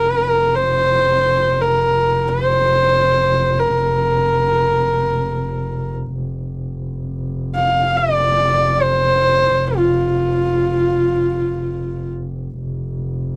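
This is a close, dry studio recording with a 1970s character, a touch of light reverb and some lossy compression artefacts, cut from a longer piece of traditional Mongolian folk music. It moves in free time with a proud, galloping mood. Up front, a single horsehead fiddle carries the melody with a rich, nasal and husky tone, its bowed horsehair strings giving an earthy, airy quality shaded by light vibrato and portamento. Beneath it, one bowed double bass holds a low drone, dark in colour with a smooth top, and is also shaped with vibrato and expressive portamento. The fiddle falls silent at 12.1 seconds, and the bass drone carries on alone until 13.4 seconds.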